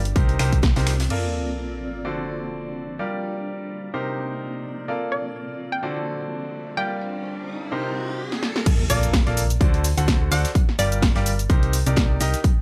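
A clear baby grand piano riff with long sustain carries this euphoric, feel-good piano house excerpt in Bb major at 127 BPM, pumping with sidechain and trailed by delay as it cycles through Cm7, Bbmaj7, D7 and Gm7. A cloudy, blurred granular pad with a slow attack and built-in reverb hangs beneath the opening stretch, also pumping, while a short burst of drums and a round, dark FM bass mark the opening moment before falling away. Electronic effects fill the middle, with an impact at 1.1 seconds and a riser building toward the drop at 8.7 seconds, where a second impact lands. From 5.1 seconds a hollow, bouncy square-wave pluck, detuned and coated in chorus, 12-bit sampler grit and delay, adds a bright melody. A dry, overdriven analog drum machine with a punchy snare, crash, finger snaps, hi-hat and shaker returns with a fill just before the drop. At the drop it is joined by an up-front, tape-warm layered electronic kick and very quiet jazz brushes on hi-hat and snare, each set in a small room, with the punchy FM bass pumping underneath. 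The groove carries a light 16th-note swing, and the mix sits in light reverb.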